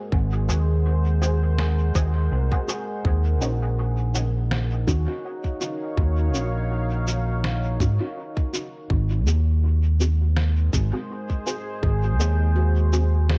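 Hazy and spacious, this ambient dub fragment settles into a loose, lightly swung 4/4 groove that drifts from Ab7 to Ebm7 at 3.0 seconds and back to Ab7 at 8.9 seconds. A deep, moody ambient pad holds sustained chords with slow-blooming detuned sawtooth and sub-octave layers, softened by chorus and its own reverb, while a ringing stainless-steel handpan plays meditative arpeggios in the background, trailed by dub echo. Up front, a round, punchy fingered electric bass anchors the low end alongside a tight, tape-warmed electronic kick drum that drops out at 12.0 seconds. A muted, filtered dub chord stab with short, fast-attack hits, phaser, ensemble chorus and echo flickers through the track, and a muffled, pitched-down sampler-style shaker and fat snare, compressed and echoed, fill out the rhythm. The mix is dry in terms of reverb but heavy on echo.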